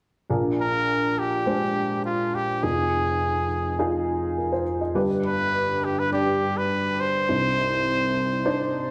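A dark, worn upright piano opens this bittersweet, dramatic pop passage at 0.3 s. Its woody, slightly detuned tone is intimate enough to catch the audible action noise. A clear trumpet enters at 0.6 s to carry the solo melody in a pop style, punchy and close-miked with a light vibrato. Both parts sit up front in a straight 4/4 as the piano's long-sustained accompaniment moves through Bb7, Fm7, G and Cmadd9. A wet, large studio reverb surrounds the pair, and the passage, cut from a longer piece, runs to 8.9 s with both instruments still sounding.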